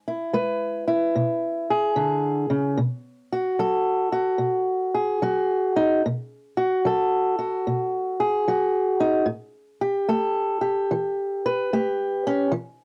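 A home recording on cassette carries light reverb and a hint of tape character, with the guitar sitting up front. This is a slow, swaggering blues at 74 BPM in 4/4, its eighth notes swung at 66% for a laid-back feel, and the tuning sits slightly high at A4 = 444 Hz. A single fingerpicked old ladder-braced acoustic guitar plays alone for the whole 12.8-second fragment, ranging from A2 to B4. Its tone is dark, woody and boxy, with the dull bite of old strings. The harmony opens on E7, moves to a bare B7 at 2.8 seconds, and settles on a bare A7 at 9.3 seconds before the clip is cut from the longer piece.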